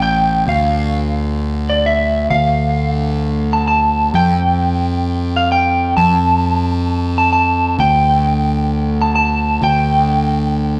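Post-rock in a straight 3/4, brooding yet cathartic, cut from a longer piece. An electric slide guitar, played with fingerpicks and slightly broken-up in tone, carries the melody high over a fuzz-drenched, overdriven picked electric bass that sits direct and up front, moving through Dm, F and Dsus4. The band plays live in one large studio room, and a wet reverb with a 1.4 s tail gives the sound a spacious, haunted depth.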